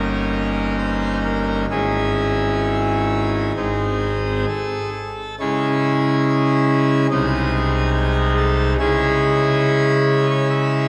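The rhythm moves in a flexible four-beat metre, stretched and relaxed with rubato in the manner of a slow chorale. This is a grave, dark classical piece for solo pipe organ, cut from a longer work and tuned a little below modern concert pitch, at A4 = 435 Hz. The full organ speaks with majestic, brilliant mixtures and a baroque voicing, sitting up front with an audible chiff on its attacks and spanning deep pedal tones up to the treble. The harmony opens on a D#7 over G and settles through C# minor and G# before a second phrase begins at 5.4 seconds, returning to C# minor and closing on it at 8.8 seconds. A three-second church reverb surrounds the instrument, lending the solemn chords a vast, lingering resonance.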